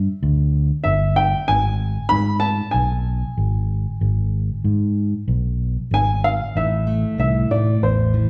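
A round, amped fingered electric bass opens this yearning, stirring indie folk excerpt, joined at 0.8 s by a dark, woody upright piano carrying the melody up front, its short, mellow notes carrying audible action noise for an intimate, vintage feel. At 6.6 s a full-bodied fingerpicked jumbo acoustic guitar enters as accompaniment, and the arrangement begins to build. The players sound as if they are performing live together in one room, bathed in a large, wet studio reverb.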